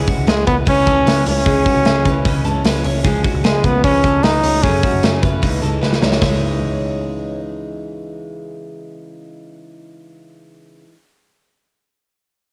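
A clear, close-miked flugelhorn carries the melody up front in this restless, bittersweet slice of jangly indie pop, entering at 0.3 seconds with pop-style vibrato and scooped notes. The tune moves at a brisk 151 BPM in straight 4/4 in C# minor, with chords shifting from C#m to C#, then F#m and C#madd9. A big rock drum kit sits prominently in a large room, with a punchy kick, a medium-tuned snare and hi-hat, and a drum fill at 5.8 seconds ushers in the second section before the kit stops at 6.3 seconds. Underneath, a vintage foam-muted electric bass gives a dark, round, amped low end. A picked steel-string acoustic guitar plays warm accompaniment with an auditorium character, while a bright, twangy, compressed twelve-string electric guitar plays clean arpeggios in the background. Cut from a longer piece, the home cassette recording has light reverb and a tape haze on the guitars, drums and flugelhorn.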